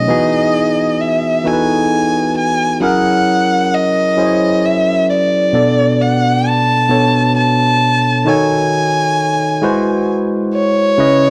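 A single bowed violin leads this late-night, sultry R&B excerpt, singing the melody between C#5 and A5 with vibrato, a soft attack, expressive portamento and a smooth top, set up front and touched by a slapback echo. Beneath it, a barky tine electric piano plays the accompaniment from B2 to D#5, its bright, clean tone coming through a combo amp with a subtle chorus, also placed up front. The tune moves slowly at 44 BPM in 6/8 with a straight feel, in F# dorian with tuning at A4 = 439 Hz. Over about 11.3 seconds the harmony passes from Emaj9 to F#7 and Bm7, then tightens through D#m7b5 to G#7alt near 9.6 seconds. Light reverb and a dark, warm production give the fragment an intimate glow.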